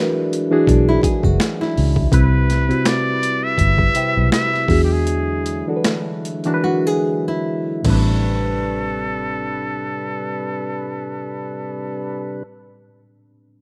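A rough home-demo mix in digital ambience carries this soulful, introspective R&B and neo-soul excerpt in A dorian at 70-83 BPM with a swung 16th feel, where a reedy, lightly overdriven electric piano with phaser and a clean tonewheel organ on slow rotary speaker hold the chords, a gritty, pitched-down sampler-style drum kit with thumpy kick, high-tuned snare and finger snaps sits up front until 8.1 s, a round, foam-muted electric bass anchors the low end, a fingerpicked nylon-string guitar adds brief second lines, and a nasal, breathy trumpet with straight mute and slapback echo carries the jazz-style melody from 2.1 s as the tempo slows and a silent gap opens at 6.6 s.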